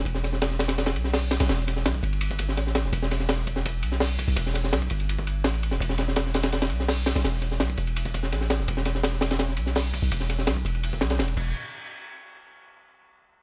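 A long, deep 808-style bass in E minor opens this drum and bass and jungle cut from a longer piece, its sine tone landing with a fast attack before decaying mellowly as a filter sweep runs across it. A breakbeat drum kit joins at 0.1 seconds and drives the straight 4/4 at 167 BPM, with kick, snare, hi-hat, ride and crash all in play. The kit sounds like an acoustic set in a small room, gritty and saturated, pairing a punchy kick and a high-tuned snare with dark cymbals and a rolled-off top, while high-pass filtering trims each drum and the room sound. Both bass and drums sit up front in a dry mix, building an atmospheric, nostalgic mood. The drums stop at 11.4 seconds and the bass at 11.5, leading into a short closing passage.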